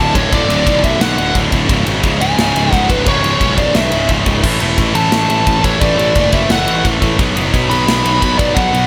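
A dark, high-gain lead guitar carries the melody over two bright distorted rhythm guitars churning out a low riff, a growly fuzz bass and a punchy, big-room rock kit with bright cymbals (entering at 0.2 seconds), giving this heavy, relentless metal excerpt in C# phrygian at 175 BPM a half-time feel under light reverb, with chords moving from D through C#5 and A5 to B5.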